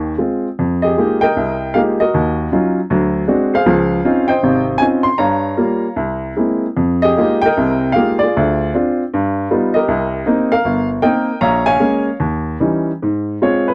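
A woody, close-miked upright piano carries this solo jazz passage alone from 0.0 to 13.7 s, its warm tone sitting up front in a dry, intimate 1970s-style studio sound. The mood is sophisticated and relaxed, with a swung, rubato feel around 154 BPM in 4/4, spanning from the low bass to the upper treble. Rich harmony moves from an opening Ab6 through chords such as Fm11, D7#11, Dbmaj9 and G7alt before settling back on Ab6 at 13.0 s, in a section cut from a longer piece.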